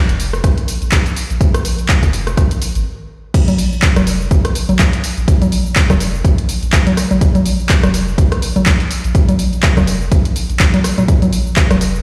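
The excerpt opens on a deep, thick, saturated sub bass with a fast attack and sidechain pumping, joined almost at once by a punchy analog drum machine of cabasa, congas, crash cymbal, handclaps, hi-hat and rim click, overdriven and up front, with an overdriven electronic kick drum arriving at 0.4 seconds. This gritty, hypnotic acid house track runs at 124 BPM in 4/4 with a 57% swing on the sixteenths. After a brief stop from 2.9 seconds, the drop hits at 3.3 seconds and carries through to the end, all heard as if played on a big sound system in a bare stone room.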